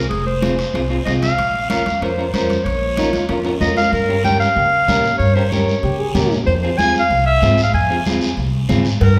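A wet recital-hall reverb surrounds this fiery, danceable cumbia excerpt at 189 BPM, where a clear, up-front clarinet carries the melody over woody, thumpy pizzicato upright bass and a clean, picked semi-hollow electric guitar. Bright, high-tuned congas sit close and dry in the background with a raspy, distant guiro and ringing metal-shell timbales and cowbell. The timbales and cowbell drop out during a drum fill as the music moves into F harmonic minor at 3.9 s, then return briefly at the very end. A dark, punchy trombone with light vibrato and scooped notes adds brief second-line phrases at 3.0 s and 5.8 s.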